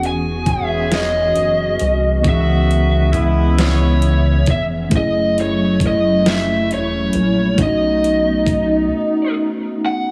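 The overdriven lead guitar, picked through a small cranked amp and sitting up front with tape echo, carries the melody over this slow, intimate six-eight R&B excerpt at 45 BPM in E major. Beneath it, a mellow tine electric piano plays the accompaniment through its built-in speakers, while a hollow, flute-like pad with a warbling ensemble chorus holds sustained chords across the full 10.1 seconds. A rubbery, nasal square-wave bass with a resonant filter pluck and a knocking, produced drum kit with a deep snare and metallic hats give the groove a sensual weight. A tight horn section adds smooth, vibrato-tinged stabs in octave doubling from 0.5 to 4.4 seconds. The chords move from E6/9 through C#m9 and F#m7 to B9, and after the bass stops at 8.9 seconds a brief break closes the passage, all set in light digital ambience with a heavily compressed, radio-like sound.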